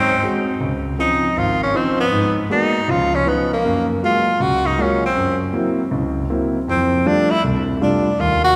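Jazz swing with a warm, playful mood, where a bright tenor saxophone with vibrato solos up front from 0.6 seconds over an intimate concert grand piano whose deep bass, smooth tone and audible action noise lend a vintage feel, all bathed in the long, wet reverb of a church through lush extended chords in this short cut from a longer piece.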